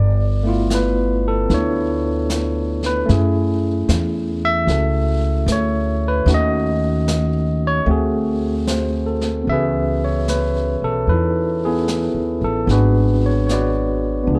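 Melancholic and smoky, this jazz ballad excerpt moves at an unhurried 75 BPM in 4/4 with a swung eighth-note feel, set in C# minor and tuned slightly sharp to A4 = 444 Hz. A bright, barky tine electric piano carries the harmony from the first moment, sitting clean and up front as it voices lush extended chords such as G13, F#m9 and D7#11. Alongside it, a pizzicato upright bass with steel strings gives a woody, thumpy low end, also placed close to the listener. A vintage brush drum kit joins at 0.7 seconds, its brushed snare and hi-hat sitting further back with a natural studio-room sound and a rolled-off top. Around 9.5 seconds the music shifts into a new section on C#m11, drifting toward G#m7b5 before the cut, all within a dark production that keeps reverb to a minimum.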